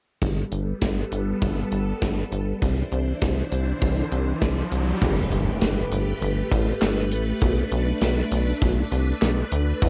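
This wistful, nostalgic synth-pop excerpt opens at 0.2 s with a gated 80s drum kit, punchy in the kick and bright in the cymbals, playing up front with handclaps, hi-hat and snare at a steady 100 BPM in G major, alongside a rubbery, hollow square bass and a swirling string machine holding sustained chords through chorus and phaser. A background electronic riser builds from 3.7 s into an impact at 5.0 s, marking a new section as the chords move from Gadd9 and Cadd9 back to Gadd9 and on to Bm7. The whole excerpt carries the booth ambience and character of a home cassette recording, with tape coloring the strings and drums.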